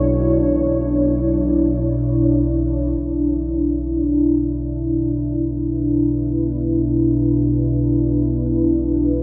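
In free time and B minor, this ominous ambient excerpt sets a dark, full-bodied analog pad holding sustained chords, moving from Bmadd9 to Bm at 3.0 seconds, over a low analog drone built from detuned sawtooth and pulse waves with wave-folded edges. Both parts sit up front with slow attacks, long releases and chorus, and a filter sweep begins shaping the evolving drone at 3.0 seconds. A huge, dreamy reverb with an 8.1-second decay soaks the whole mix.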